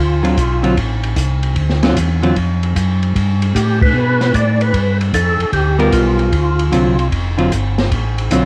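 A swung 4/4 groove at 151 BPM drives this bluesy, greasy soul jazz organ trio excerpt, where a round, mellow tonewheel organ carries the bass line up front through a slow rotary speaker, a fat, lightly overdriven percussive organ with key click states the melody briefly at the start and again from 3.5 seconds, a dark, clean hollow-body guitar comps over D7#9 and G7#9 chords, and an acoustic kit with dark cymbals and a boomy kick keeps time, with the band hitting an accent at 3.7 seconds on a home cassette recording touched by light small-room reverb.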